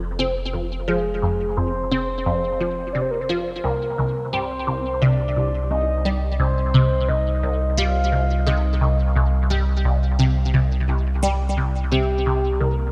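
A dreamy, reverb-soaked mix with a moderate plate wash sets an expansive, mysterious mood in this ambient, sequencer-driven space music at 87 BPM in 4/4, cut from a longer piece and moving from Fm to Cm7. Up front, a squelchy, resonant blip pluck with phaser, ensemble chorus and delay drives the riff from the start, sitting over a deep, round sine sub bass. From 0.9 seconds, a soft, octave-layered synth lead with detuned, wave-folded tone, vibrato, chorus and delay carries a mellow melody.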